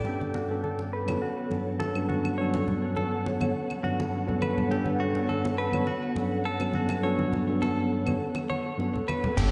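A clean tine electric piano sits up front with tape echo over a single Gmaj9#11 chord in this blissful, sunny sunset chillout fragment at 103 BPM in G lydian, joined by an ethereal phased pad, a bright, twangy direct-recorded guitar playing arpeggios through spring reverb and a filter sweep, and ringing congas, with a background deep house kit of metallic hats, shaker, claves and crash from 1.1 s, before a woody pizzicato upright bass, a deep electronic kick and a downlifter arrive at 9.4 s, all inside a dreamy, hall-soaked mix.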